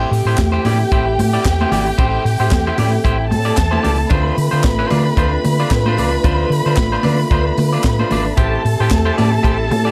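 A round, punchy hollow-body electric bass anchors this danceable, sultry disco excerpt, its amped, fingered tone sitting dark beneath the groove. A tight funk drum kit enters at 0.1 seconds with a dry, high-tuned snare, a tight kick, hi-hat and handclaps, swinging lightly on the sixteenths, while vintage, band-limited congas ring in the background from 0.4 seconds. A slightly broken-up, compressed electric guitar adds picked accompaniment, and a lush symphonic string section carries a second line with expressive vibrato and a smooth top. A distant, roomy French horn section holds soft-attack sustained chords underneath. The harmony moves from Am7 to Dm7 and back to Am7, all set in light studio reverb.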